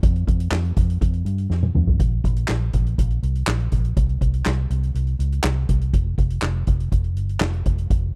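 In a straight 4/4 pulse, this dramatic, driving pop excerpt pairs a soft-mallet drum kit (boomy kick, medium-tuned snare, hi-hat, toms and handclaps) with a dark, round, punchy foam-muted fingered electric bass, both up front in a dry, close 1970s-style studio sound, as a drum fill at 1.5 seconds leads into the second section at 2.0 seconds.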